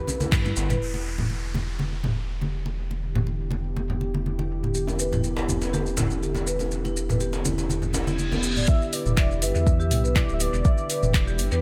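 Afro house at 122 BPM in E minor with a driving, hypnotic swing, where a deep, rumbling detuned saw bass and afro-pop kit of snaps, claps, warm hats and toms carry bright low-tuned congas, a distant djembe with metal rattles, grainy maracas and dub-echoed marimba arpeggios over a smooth pad moving from Em to Em7, until a downlifter and reverse cymbal lead into the drop at 8.7 seconds, where an up-front electronic kick and a vibrato-laden synth lead return in this echo-heavy, small-room excerpt.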